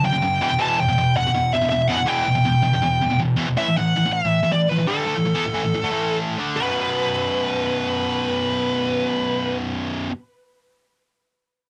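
Metal with a heavy, aggressive mood, played in a straight 4/4 feel, this fragment is cut from a longer piece. A high-gain lead guitar carries the melody up front, its warm, distorted, picked tone running from the start until 9.6 seconds. Alongside it, also up front, a double-tracked high-gain rhythm guitar drives the riff with a bright, picked bite, lasting until 10.1 seconds. The harmony moves from E minor to A5 at 3.6 seconds and on to B5 at 6.6 seconds, marking three short sections. Both guitars carry distortion and the saturated grain of cassette tape, set in a moderate booth ambience that gives the home-recorded sound a close, compact feel.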